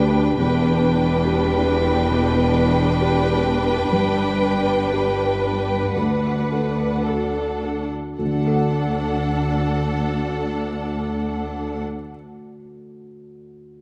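Bathed in a wet concert-hall reverb, this hopeful, uplifting cinematic film-score fragment in D major drifts in rubato at 52-73 BPM, slowing over its first 8.2 seconds, as a clear, smoothly bowed violin section carries the melody above a lush second violin line, an expressive viola section with portamento, a background cello section and a focused double bass section, all over a dark, intimate felt-muted upright piano whose action noise stays audible and which rings on alone from 11.8 until 13.8 seconds.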